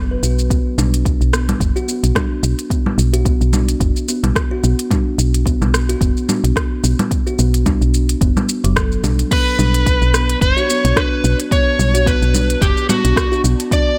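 Dry and meditative, this excerpt of earthy organic downtempo swings gently in 4/4 as a hollow, ringing kalimba plays tape-echoed arpeggios over a round, dark FM bass with sidechain pumping, a deep electronic kick and an overdriven organic electronic drum kit of congas, crisp hi-hats, rim clicks, shaker and crash cymbal. From 9.3 seconds an up-front overdriven slide guitar carries the tape-echoed melody above them, and a faint, breathy, wind-like tuned noise texture joins at 10.1 seconds.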